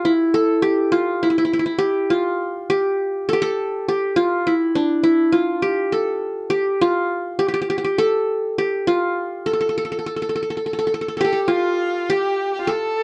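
A dark, warm production sets this short cut from a longer Arabic maqam ensemble piece in a moderate studio reverb. The mood is hypnotic and soulful, moving at 102 BPM in a straight 4/4. An acoustic qanun carries the melody from the start, its plectrum-plucked triple strings sounding bright-edged and sitting up front, within a compact span from D4 to A4. At 11.2 seconds a single bowed violin joins as a second line, rich and focused with vibrato, its tone both present and slightly distant and set quieter than the qanun. The passage repeats its opening material, and both instruments carry through to the close at 13.0 seconds.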